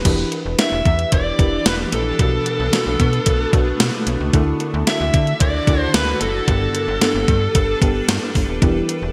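Nostalgic and dramatic, this short cut from a longer 1980s-style pop piece moves in a straight 4/4 over a chord cycle of Em7, Bm7, Dadd9 and Gadd9. Up front, a gated digital drum machine with a thumpy kick, gated-reverb snare, hi-hat and crash cymbal carries a tape-warm, sampler-style character, while a very quiet, saturated cowbell ticks along beneath it. A snappy, slap-like FM bass with a metallic attack anchors the low end, and a soft, round FM electric piano with chorus fills in the chords with a dark, full-bodied tone. From 0.9 seconds a cloudy granular pad drifts in the background, blurred and evolving through its own reverb. At 0.6 seconds a bluesy, overdriven lead guitar steps forward with a picked, distorted melody through digital delay, stopping at 7.8 seconds, all set in a lush hall within a bright digital production.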